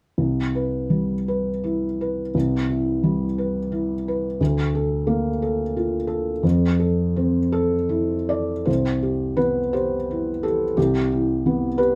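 A felt-muted upright piano plays alone from the start, its thick felt giving a mellow, hushed tone, with the mechanism's action noise audible and the instrument placed up front in a wet studio reverb. This intimate, peaceful fragment of neoclassical minimalist piano moves in a slow, rubato 6/8 at 50-60 BPM in C major, reaching from C2 to D5. The harmony drifts from Cmaj7 through Bbmaj7/D and Fmaj7 before settling back on Cmaj7 at 8.7 s, where a new passage begins.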